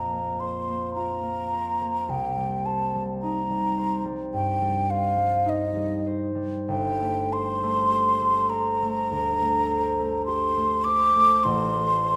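A slow, rubato 4/4 pulse of 45-55 BPM gives this brief passage from a longer impressionist duo for flute and harp in G minor a mysterious, wistful mood. The concert flute carries the melody up front between Eb5 and D6, its hollow, airy tone shaped with vibrato and tongued notes. The concert harp accompanies from G1 to C5 with thumb-plucked, ringing chords moving from Bbsus2 through Cm7 and Gmadd9 to Am7, all set in a wet recital hall reverb.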